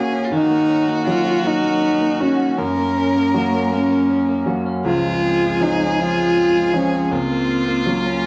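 Acoustic folk-pop ballad in a slow, straight 6/8 at 53 BPM, intimate and heartbroken, where a dark, woody bowed cello carries the melody up front from 0.3 seconds, a distant violin adds a rich second line with vibrato and portamento, a clear upright piano with audible action noise and long sustain plays the accompaniment, and an electric guitar through a small old amp picks slightly broken-up, compressed arpeggios with harmonic tremolo, all in a moderate large studio reverb over Ebm7, Gb, Dbmaj7 and Gb/Db, in a short excerpt cut from a longer piece.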